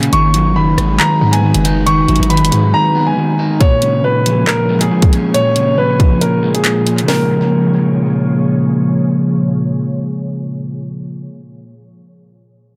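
A punchy, hard-hitting 808 bass with a sine-based body and a noisy edge drives this cold, menacing drill fragment at 138 BPM in a half-time feel, stopping at 2.7 s, while a dark, mellow baby grand piano carries the melody in Bb phrygian. A slightly broken-up electric guitar plays fingered accompaniment, and an ethereal, warbling pad holds chords in the background with chorus and reverb, the harmony moving from Abm7 to Bbm7. The electronic drill kit of hard-clipped kick, sharp snare, bright hats, rim clicks and handclaps sits up front until 7.2 s, its kick muted from 6.2 s, and the drums, piano and guitar all carry analog delay in an echo-heavy mix.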